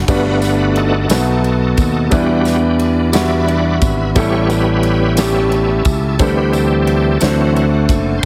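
Slow gospel in 6/8 at 59 BPM in G major, jubilant and uplifting, this brief excerpt centres on a bright, shouting tonewheel organ that leads throughout, its sustained chords lightly overdriven and colored by chorus vibrato and a slow rotary speaker. Beneath it, a concert grand piano with deep bass accompanies, a round, dark fingered electric bass sits up front, and a polished studio drum kit with bright cymbals and a punchy kick enters at 0.1 s alongside a jingly tambourine tucked in the background. The chords move from Gmaj7 through B7, Em7 and A7 to D7sus4 and D7, all in a small room with light reverb and a heavily compressed radio sound.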